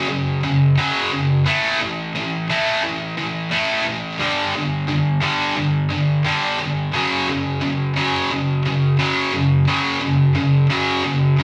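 A bright, double-tracked electric guitar opens alone and up front, its heavy high-gain distortion grinding through picked power chords that move from F#5 to A5 at 1.5 seconds, G5 at 4.2 seconds and back to F#5. This menacing, driving rock fragment sits at 88 BPM in a straight 4/4 in F# phrygian, with the guitar ranging from F#2 to A3. A wet studio reverb and tube saturation give the rough rehearsal-room recording its raw edge, and the 11.4-second clip is cut from a longer piece.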